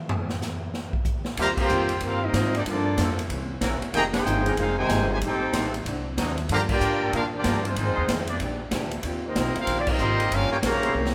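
The band plays live in one large studio room, with a moderate reverb giving the horns and drums a roomy, hall-like sound. This is an 11-second cut from a longer piece of brassy big band swing in Eb major at 188 BPM, with a firm swing on the eighth notes. The swinging drum kit opens alone for the first 1.4 seconds, its punchy kick and medium-tuned snare up front among crash, ride, hi-hat and toms. Then the full band arrives: the clear trumpet section carries the melody with vibrato, and the bright, close-miked trombone section adds a second line beneath it. A muted trombone section with a straight mute holds soft, nasal sustained chords in the background. The growly pizzicato upright bass on steel strings, a dark, clean, picked archtop guitar behind the horns, and band accents at moments such as 4.1 seconds drive the chord changes, from Eb69 through Gm11, C7b9 and Ab7#11 back home, before a drum fill at 11.0 seconds.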